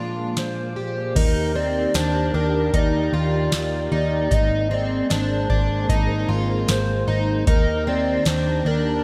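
Soaked in lush hall reverb, this floating dream pop piece opens on a mellow, organ-like ensemble organ-string holding sustained chords beneath an up-front, shimmering, octave-doubled fingerpicked twelve-string acoustic guitar whose arpeggios carry analog chorus and tape echo. At 0.4 s a warbling, nostalgic lead enters with a detuned, vibrato-laden melody through chorus and tape echo, alongside a booming analog drum machine with a deep kick, crisp snare, metallic hats, tambourine and crash. A dark, round, foam-muted picked electric bass joins at 1.2 s as the harmony settles onto Eb, moves to Abadd9 and returns.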